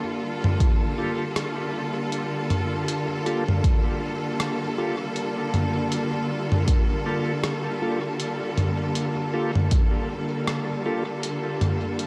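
Ambient dub at 79 BPM in 4/4, with a swung sixteenth-note feel, this spacious, meditative passage sits on a single Gm9 chord in G minor. A clear, focused studio string section opens at 0.0 seconds with bowed, sustained chords, its vibrato carried up front. A muffled, compressed sampler-style drum kit of hi-hat, rim click and toms follows, re-recorded in a large room and trailed by dub echo. The kick drum enters at 0.6 seconds, punchy, layered and overdriven, standing forward as the loudest element before it stops at 9.9 seconds. In the background, a bright, reedy tonewheel organ adds clean stabs with audible key click through a slow rotary speaker and dub echo, all under a light reverb in this cut from a longer piece.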